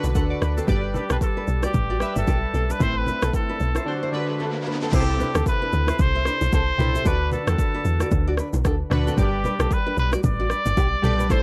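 A clear, punchy trumpet with light vibrato carries the sunny, romantic melody from 0.9 seconds in this afrobeats excerpt at 113 BPM in G major, over a fingerpicked nylon-string guitar riff with audible finger squeak, round detuned analog keys with chorus, a dark, up-front log drum bass, an electronic afro-pop kit with a deep kick and shaker, very quiet soft-handed bongos and congas, and a faint riser at 3.6 seconds leading into a brief break, all captured as a dry, gritty cassette-tape recording.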